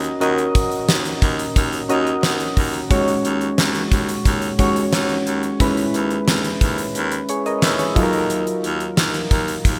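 Nostalgic and dramatic, this short cut from a longer 1980s-style pop piece moves at 89 BPM in Eb minor, with round, chorused electric-piano-like synth keys up front carrying the chords from Ebm7 through Dbsus4/Eb and E6/Eb to Ebmadd9. An edgy baritone saxophone with vibrato holds down the bass on a low Eb, while a gated 80s drum kit with a fat snare and punchy kick sits up front in a bright stone room. The bright digital production sits in a lush hall reverb with a 3.0-second decay, and the harmony shifts into a new section at 2.9 seconds.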